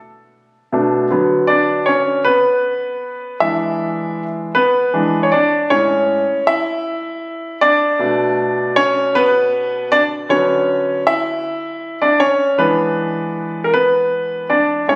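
A clear baby grand piano enters at 0.7 s and carries this romantic pop piece entirely on its own, swaying in 6/8 at a slow 52 beats per minute. In A major, the harmony moves through Bm7, D6 and E7 before settling on Amaj7 at 5.7 s, where a new section begins and the same Bm7, D6, E7 cycle returns. The piano spans A2 to E5 and sits up front, with a polished, present tone. A moderate scoring-stage reverb with a 2.1-second decay adds a sense of space around it, and the sound comes from a phone recording made in the room, finished with studio reverb and compression. The passage is cut from a longer piece and runs to 15.0 s.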